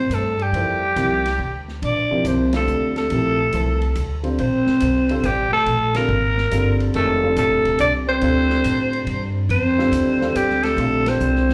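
A growling alto saxophone carries the melody up front, raspy and gritty with vibrato, while a breathy, dark trombone plays a second line a register lower, both touched by slapback echo, in this hypnotic, searching modal jazz excerpt in swinging 3/4. A woody, thumpy upright bass sits forward in the mix, a grand piano adds accompaniment from 0.5 seconds, and a softly mixed drum kit with dark cymbals plays hi-hat, ride and snare. Heard through a club's PA with moderate room reverb, the band hits accents together at 2.5, 5.9 and 11.0 seconds over a Bbmaj9 opening.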